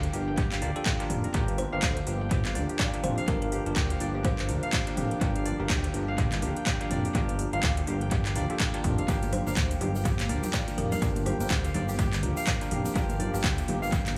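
Afro house at 124 BPM in G minor, this warm, driving passage cut from a longer piece rides a swung 16th-note groove over a single Gm7 chord. A deep, rumbling detuned saw bass with tube saturation and sidechain pumping anchors the low end, while a punchy, overdriven electronic kick and a house drum kit with metallic hats, handclaps and toms, touched by tape echo, drive the beat from a large room. Fingerpicked kora arpeggios ring out crisp through analog delay and sidechain pumping, joined by bell-like tine electric piano stabs in the background and a smooth, very quiet analog pad holding sustained chords with chorus and tremolo. A woody kalimba melody appears at 1.6 seconds and returns briefly at 9.3 seconds, its thumbnail plucks trailing analog delay. From 9.1 seconds a grainy, distant tube shaker enters, followed at 9.2 seconds by high-tuned congas struck with hard hands, filling out the percussion, all set in an echo-heavy mix with light reverb and studio ambience.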